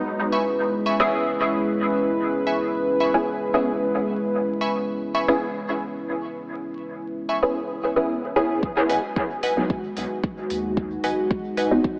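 A straight 4/4 pulse at 112 BPM drives this deep, cavernous dub techno fragment, which opens on a C#m7 with a dark, evolving analog pad, muted, detuned dub chord stabs carrying chorus, phaser and dub echo, and crisp, bright wavetable stabs riffing higher up through cassette-tape grit. At 8.6 seconds the harmony shifts to G#m7 as a filter sweeps across a synth stab, an up-front layered kick and a soft, round sub bass arrive, and smooth hi-hats join just after. Sidechain pumping breathes through the pad, stabs and bass, while a wet echo-chamber reverb, vinyl crackle and an AM-radio tone wrap the whole mix.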